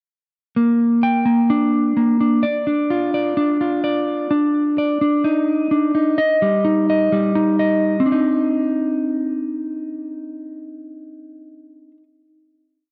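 A hip hop and trap piece in C minor at 128 BPM with a half-time feel, melancholic and menacing in mood. A lone, mellow electric guitar, dark and clean, plays fingered arpeggios in threes across eighth notes, sitting up front with spring reverb and repeating like a sampled loop over Gm, Dm, a chordless stretch and Eb. The breakdown resolves at 8.1 seconds onto a lingering Cmadd9 final chord, all set in a lush hall reverb.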